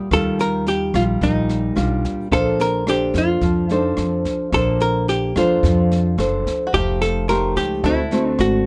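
A dark, clean hollow-body jazz guitar carries the melody up front in this romantic, sunny bossa nova excerpt at 109 BPM in Bb major, set over a fingerpicked classical nylon-string guitar, a woody, thumpy pizzicato upright bass, a brushed drum kit with boomy kick and rim clicks, a bright, twangy banjo second line in the background, and a very quiet grand piano heard only until 2.3 seconds and again from 7.3 seconds, as the chords move through Ebmaj9, Bbmaj9, F9 and D7 in a warm production with light reverb.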